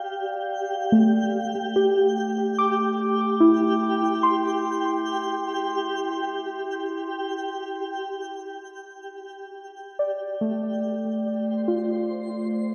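Weightless and serene, this ambient excerpt in F major drifts at 73 BPM, led by muted, felt-like synth keys playing intimate arpeggios up front, their dark, soft tone striking with a fast attack and decaying through chorus and delay. Behind them, a twinkling granular texture sparkles with an octave-up shimmer and long sustained release in its own reverb, while a fade-out on the synth texture runs through the first 11.3 seconds. A concert hall reverb lends the recording a spacious bloom as the harmony settles back onto F at the close.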